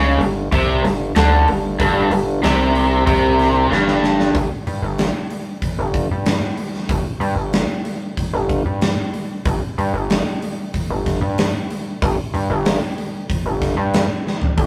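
A bright, double-tracked electric guitar with overdrive opens this raunchy, swaggering blues rock and southern rock cut alongside the bass, picking a raw garage riff around a G5 chord in a power-trio setting. It runs at 94 BPM in a straight 4/4. A gritty synth bass sits up front beneath it, with sawtooth and oscillator-sync tones, wave-folded and saturated edges, and a resonant filter pluck with a fast attack and sustained notes. A big acoustic rock kit comes in at 0.2 seconds with a dark, smooth sound, a punchy kick, a medium-tuned snare, hi-hat and toms, and it plays a fill leading into the second section. The guitar drops out at 4.3 seconds, leaving the bass and drums to drive on, and a last drum fill arrives near the end. The rough rehearsal-room recording has tube saturation and a moderate studio reverb, and the piece is cut from a longer performance.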